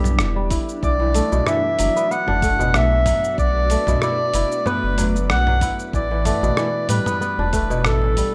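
A distant, roomy clarinet carries the melody in a classical solo style, sitting up front with digital delay and shimmer reverb trailing its phrases in this mystical, meditative slice of organic downtempo. Beneath it, a fingerpicked kora rings out crisp arpeggios through tape echo, while a cloudy granular pad holds blurred, evolving chords in the background and a deep, round sub bass with tube saturation anchors the low end. The groove comes from a gritty, compressed sampler-style kit of cabasa, hi-hat, rim click and toms, re-recorded in a large room and lightly swung, joined at 0.5 seconds by a layered electronic kick and a very quiet, far-off darbuka played with hard hands. A metallic bronze singing bowl struck with a wooden striker enters at 0.8 seconds, its airy, slow-beating tone hovering faintly over the harmony as it moves from Em7 to Bm7 and settles on Asus2. The whole thing has the rough feel of a home demo, cut from a longer piece.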